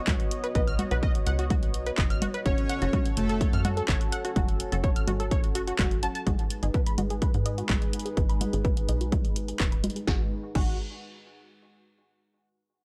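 A dry, gritty hardware recording with digital ambience opens onto a driving, dark slice of melodic techno in straight 4/4, cut from a longer piece. An up-front, heavy electronic kick with a tape-warmed, small-room character anchors a punchy analog drum machine of congas, handclaps, hi-hat, snare and crash cymbal, its hats, percussion and cymbals pumping against the kick. Beneath it, a tight sawtooth-and-square sequencer bass with tube saturation plucks and decays, while a detuned, mellow sequenced synth spins chorused arpeggios through analog delay, and a deep, moody analog pad holds slow-attack chords with chorus and sidechain pumping. From 0.6 seconds a muted, full-bodied dub chord stab sits in the background, washed in phaser, lush chorus and delay. Between 2.5 and 3.6 seconds a thick, bold unison lead with vibrato and cassette-tape colour carries a brief melody, shadowed by a smooth supersaw second line, before a filter sweep on the arpeggio sound reshapes the track from 6.3 seconds as the chords move from B and F#m to G#m.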